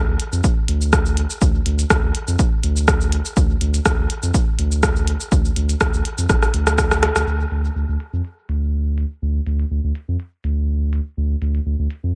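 A thick, saturated sine sub bass with tube grit and sidechain pumping opens this clinical, quirky minimal techno cut in D minor at 123 BPM with a light 16th-note swing, soon joined by a clicky, up-front kit of hi-hat, rim click and shaker under low-pass filtering and a punchy, tape-warm layered electronic kick that drops out at 6.9 seconds, just after a drum fill begins at 6.3 seconds, all set in an echo-heavy mix with light reverb.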